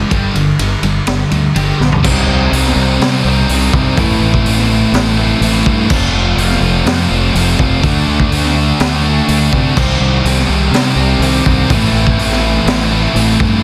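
Quiet-loud alternative rock with a dark, angsty mood, cut from a longer piece, where a bright, twangy twelve-string electric guitar plays arpeggios with slapback echo in the background for the first 2.0 seconds. Alongside it, a scooped high-gain guitar and a thick fuzz guitar drive a riff, over a growling, overdriven fingered bass and an up-front raw garage drum kit with a high-tuned snare, boomy kick and gritty, rolled-off top. After a drum fill, a crunchy double-tracked overdriven guitar joins the riff at 2.0 seconds as the chords move through Cm, Am, F and D in a small room, with a dense, heavily limited modern master.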